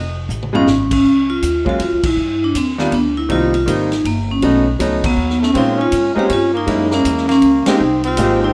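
A ringing, close-miked vibraphone played with medium hard mallets carries the melody from 0.6 seconds, its slow motor vibrato shimmering up front over a clear baby grand piano with audible action noise and a woody, pizzicato upright bass in this cool, swinging jazz waltz at 160 BPM. A big-band drum kit with dark cymbals and a punchy kick opens with a fill at 0.3 seconds, and the band hits accents at 2.0, 5.0 and 7.6 seconds as the chords move through rich extended harmonies. At 5.0 seconds a dark, forceful trumpet with scooped notes adds a second line, all set in light reverb with the feel of a rough home demo cut from a longer piece.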